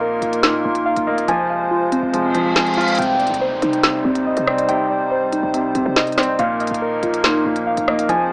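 This short drill excerpt, cut from a longer hip hop piece, moves at 141 BPM with a half-time feel in C minor and carries a cold, ominous mood. Muted, felt-like synth keys sit up front with dark, full-bodied arpeggios, thickened by chorus, a low-pass filter and tape echo. Beneath them, an intimate baby grand piano with audible action noise and short sustain plays filtered accompaniment, while a hollow, flute-like pad holds detuned chords under a chorus sheen. The electronic drill kit enters at 0.2 s, up front with a woody snare, crisp hi-hats and rim clicks, and a punchy, tight 808-style bass sits in the background. A reverse cymbal and downlifter arrive at 2.3 s, and at 3.0 s the harmony shifts from Bbsus4 and Fm to Cmadd9 before returning to Bbsus4, all heard through light reverb and a small-speaker sound.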